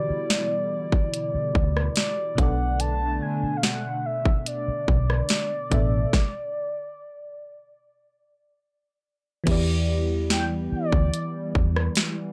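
A mellow horn-like synth lead with chorus and delay opens over a warbling FM electric piano with phaser and a hollow, flute-like pad that pumps beneath it, before a dark, round, foam-muted electric bass and an up-front trap kit with a hard-clipped kick, sharp snare and bright hats join in this longing, moody contemporary R&B cut in E minor at 72 BPM, moving from Em9 to Bm7, breaking into a stop from 6.1 to 9.5 seconds, and settling on Em7 in a dry, close sound.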